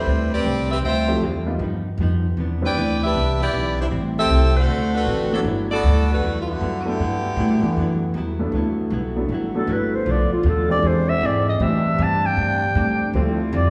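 Brassy and swinging, this jazz excerpt moves at 156 BPM in G major with a swing feel, cut from a longer piece. A clear, present saxophone section carries the melody up front with vibrato, while a clean, compressed hollow-body electric guitar and a woody pizzicato upright bass run underneath throughout. A grand piano with audible action noise adds intimate accompaniment, dropping in briefly near the start and returning at 5.3 seconds. At 8.5 seconds the saxophones give way to a soft-attacked, smooth-topped section holding sustained chords in the background, and a raspy, growling clarinet takes a gritty solo from 9.6 seconds with light vibrato. Richly extended chords such as Am11, Gmaj13 and E7alt colour the harmony, and a recital hall reverb gives the whole a roomy, churchlike sheen.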